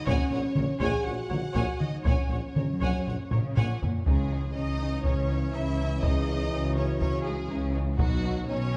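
A straight 4/4 pulse at 122 BPM, driven by a close, hard-stick taiko ensemble, propels this heroic, dramatic epic orchestral film score in C# minor, where lush bowed violins sing the expressive, vibrato-rich melody over a background second violin line, even viola accompaniment, dark woody cellos, double basses, mellow, tight French horn chords and a background tuba until 3.7 s, before a taiko fill at 3.3 s leads into a background trombone section entering at 4.1 s, set in a moderate scoring-stage reverb.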